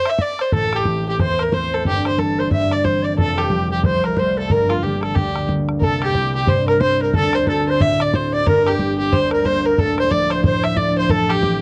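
Dark yet lively and spirited, this swung Celtic hornpipe fragment puts a nasal, reedy, gut-string fiddle up front on the melody, with an airy wooden flute carrying a distant second line with vibrato and slapback echo, a boomy, open bodhran on percussion, and a thumb-plucked, ringing concert harp entering at 0.5 s as accompaniment, all in a dry, close 1970s-style studio recording.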